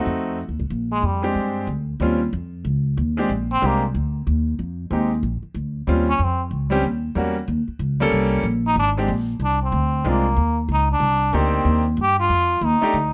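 A buzzy, brilliant trombone with a metal mute and plate reverb solos in brief bursts from 0.9 seconds before stretching into a longer line at 8.7 seconds, over a clear baby grand piano, its action noise audible, and a woody pizzicato upright bass in this relaxed, swinging small-group bop fragment cut from a longer piece.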